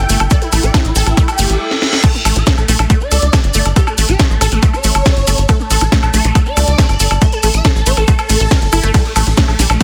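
A swarming, aggressive rave lead opens this psychedelic, alien trance excerpt over a tight, driving sequencer bass, a warbling lo-fi tape-like pad and a very quiet, nasal swarming drone, joined almost at once by a bright detuned unison pluck with dub echo, grainy maracas, a techno kit of cracking snare and metallic hats, and a punchy up-front kick, before a reverse cymbal from 1.4 seconds and a drum fill lead into the drop at 2.0 seconds in a dense, heavily limited mix.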